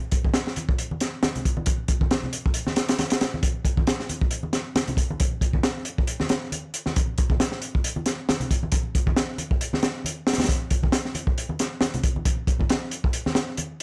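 Breakbeat at 136 BPM with a swaggering, funky 16th-note swing, built on a crunchy, saturated acoustic drum kit of hi-hat, tight kick and high-tuned snare that sits up front with a dark, rolled-off top, while low-tuned, ringing congas play close but lower in the mix from 0.2 seconds, all captured as a dry, gritty hardware recording in this brief cut from a longer piece.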